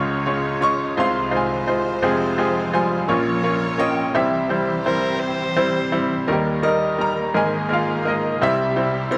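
In a slow, straight 6/8 at 56 BPM, this heartbroken, intimate acoustic folk-pop ballad excerpt is led by an up-front grand piano carrying the melody, its brilliant, worn tone with short sustain touched by slapback echo, over lush, softly bowed symphonic strings holding sustained chords through Db, Fmadd9, Bbm and C. A boxy, picked archtop guitar enters at 0.6 s with quiet arpeggios and audible finger squeak in the background, while a single smooth violin with vibrato adds a brief second line from 4.8 s to 6.3 s. All of it sits in a wet spring reverb, as a repeated section settles through Eb and Absus2 back to C.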